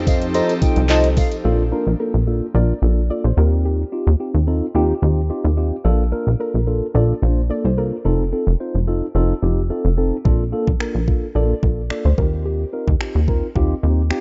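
A punchy, funky analog bass anchors this summery, carefree dance-pop excerpt, its detuned, decaying plucks running up front from the start to 14.1 seconds at 109 BPM in Bb major. The opening is a short drop, where an airy pad with chorus, a warm, breathy concert flute with tape echo set back in the mix, a jingly tambourine and a smooth electronic R&B kit of knocking kick, metallic hats, snaps and handclaps all sound together, with the pad and flute pumping against the sidechain. A mellow, clean tine electric piano with phaser holds the accompaniment up front throughout, moving through Bbmaj7, Eb69 and F7 chords. From 2.0 seconds a round, dark pluck with chorus carries a gentle melody. The drum kit returns at 10.3 seconds. The whole piece has light reverb and the rough, dulled top end of a home demo.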